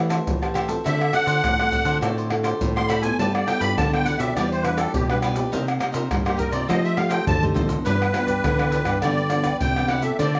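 This samba and choro piece, cut from a longer work, has a lively, sunny mood in a straight four-four feel. A reedy musette accordion carries the melody up front from 0.9 seconds, its wet, shimmering tuning taking a solo through the opening section. Underneath, a fingerpicked classical nylon-string guitar plays warm accompaniment with fresh strings and audible finger squeak, while a second nylon-string guitar fingerpicks a bass line in the background, and a bright, crisp picked cavaquinho adds chords above. Maracas, pandeiro, tamborim and a tight surdo sit up front with soft hands and a vintage, band-limited sound, closing the solo with a drum fill from 7.0 to 7.9 seconds before a new section begins. The harmony moves through rich extended chords such as Am9, Cm7 and F9 before landing on G6, all in a moderate studio reverb.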